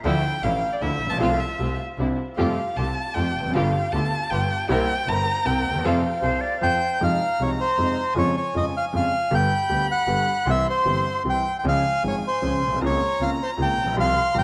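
A moderate plate reverb lends this passionate, melancholic tango a spacious glow, and the clip is cut from a longer piece running at 156 BPM in a rubato 3/4, tuned to A4 = 436 Hz. It opens in F major with a violin solo, the bowed violin singing with vibrato, portamento and a soft attack over a clear, focused, distant bowed double bass and a smooth, vintage concert grand piano with deep bass. A studio string section adds floating sul tasto stabs in the background with a slapback echo until 6.8 seconds, and a bright, airy silver flute slips in briefly from 6.2 seconds with a crisp, slightly unsteady line. From 6.6 seconds a reedy, dark bandoneon takes the melody, close-miked, dry and up front, and at 7.0 seconds the music turns to F minor for the second section while the violin continues as a second line. The harmony moves through Fm7, Db/F, G, C and Db before settling on Bbmadd9/Db.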